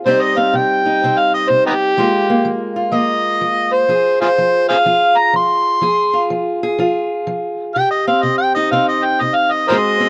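A swung 4/4 groove carries this smoky, mournful acoustic country blues fragment, where a gritty, overdriven harmonica sings the melody up front with light vibrato, tongue slaps and scooped notes in a jazz-tinged solo over a dark, boxy fingerpicked parlour guitar, both caught by close, detailed microphones in light reverb as the harmony moves from C minor to F minor and back at 7.8 seconds.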